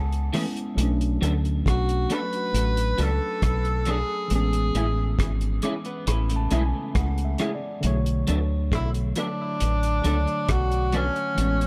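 A clear, punchy tenor saxophone with vibrato carries a longing, bittersweet lovers rock reggae melody from 1.7 seconds over a worn, slightly out-of-tune tine electric piano, a round, foam-muted deep dub bass, a dark, cloth-damped drum kit of hi-hat, kick and rim click, slightly broken-up guitar stabs with chorus and tape echo, and brief lush-chorused guitar arpeggios.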